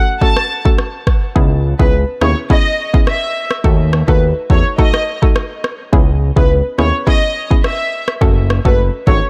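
Dancehall at 105 BPM in C# minor, this short, sultry and tough excerpt opens with a warm studio violin section carrying the melody, its gut-string, reedy tone touched with light vibrato and tape echo, over a hollow, bouncy square-wave pluck with chorus and sidechain pumping. An electronic afro-pop kit enters at 0.2 seconds with a deep, up-front kick and rim click, and a fat, saturated analog bass joins at 1.4 seconds. The chords move from F#m through C#m7, D#dim and C#m7 again before returning to F#m in a dry, close mix.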